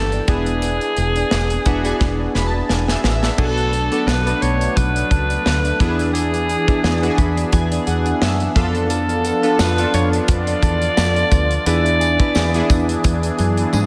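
A growling, raspy alto saxophone carries the melody over chorused retro synth keys, a clean direct-recorded electric guitar riff softened by analog chorus and digital delay, and a round, woody fretless bass, in this glossy, uplifting 1980s-style pop excerpt at 87 BPM with a light sixteenth-note swing. A punchy modern studio drum kit with bright cymbals and gated reverb drives the groove, marking the shift at 3.4 seconds with a fill as a sweeping, evolving pad rises in the background over chords moving from E7 through Bm7 and Dm6/F. A jingly tambourine joins at 8.9 seconds, and the saxophone drops out at 13.0 seconds while the rest play on.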